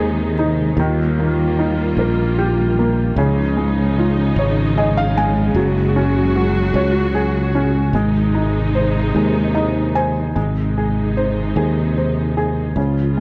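A tender, romantic pop ballad in a slow 6/8 at 50 BPM, cut from a longer piece, with a felt-muted upright piano giving soft, intimate accompaniment, a lush symphonic string section holding bowed chords with vibrato, and a growly fretless electric bass sustaining underneath, all three sitting up front for the full 13.2 seconds. The piano adds brief fills at 4.4 and 9.2 seconds, and the harmony moves through Ab, Ebadd9, Dbadd9 and Gbsus2 before a new section begins at 10.4 seconds. The sound is dry and close, in the manner of a 1970s studio, with little reverb.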